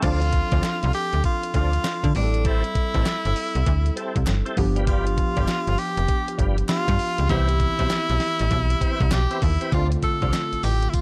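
A swung 16th-note new jack swing groove at 99 BPM bounces along on a clean 12-bit drum machine with a thumpy kick, fat snare, hi-hat, tambourine and crash, joined at 0.6 s by a crisp group handclap tucked in the background, while a snappy, metallic slap-like FM bass sits up front. Over a Dm7, Am7, G7, Cmaj7 progression in D dorian, round, detuned analog keys with chorus comp beneath smooth tonewheel organ stabs carrying chorus vibrato and a slow rotary speaker. An edgy, forceful tenor saxophone leads with jazz-style scooped notes and vibrato, giving this dry, confident R&B excerpt from a longer piece its punch.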